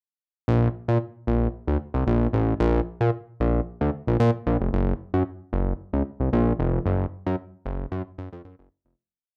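A fat analog bass opens this short, complete funk piece at 0.5 seconds and carries it entirely alone, with a smooth, danceable mood over a straight 4/4 feel. Its detuned, saturated sawtooth tone is thick and evolving, shaped by a filter pluck with a fast attack that then sustains. Sitting up front in the mix, it plays a syncopated boogie bass line spiced with chromatic approach notes, ranging from F1 to Bb2 across a single verse. A moderate small-room reverb gives the part a touch of space, and the rough home-demo mix keeps the sound raw and unpolished. A fade-out begins at 6.9 seconds, and the bass stops at 8.9 seconds.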